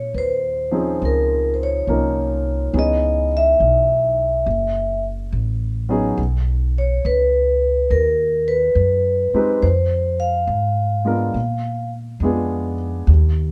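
This intimate, wistful jazz ballad excerpt opens with a vibraphone played with medium mallets, its tone metallic and airy with the motor off, carrying the melody up front alongside a pizzicato upright bass whose gut strings sound woody and thumpy. At 0.7 seconds a warm upright piano joins with accompaniment, softer in the mix and vintage in character, with its action noise audible beneath the smooth chords. The slow tempo of 70 BPM in 4/4 moves with a gentle eighth-note swing, and the harmony in Bb phrygian drifts from Bbm11 through Dbm9, Gbm and Badd9 before settling on Bb7b9. The vibraphone's melody rings out until 11.9 seconds, after which the piano and bass carry on, the piano until 13.1 seconds and the bass to the close at 13.5 seconds. A light reverb gives the small group a close, hushed room sound.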